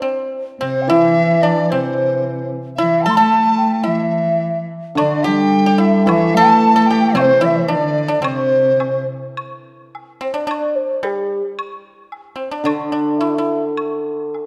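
Chinese traditional chamber music in the C gong mode, festive yet graceful, moving at 109 BPM in a loose, rubato 2/4. A mellow, distant low xiao carries the melody with expressive vibrato over a bright, percussive fingerpicked pipa, while a dark, woody bowed cello and a hollow, buzzing large dizi add second lines between 0.6 and 9.1 seconds. Shimmering hammered dulcimer accompaniment rings in brief passages, a close woodblock joins from 5.0 seconds, and the whole is set in a wet concert hall reverb with a dark, warm production.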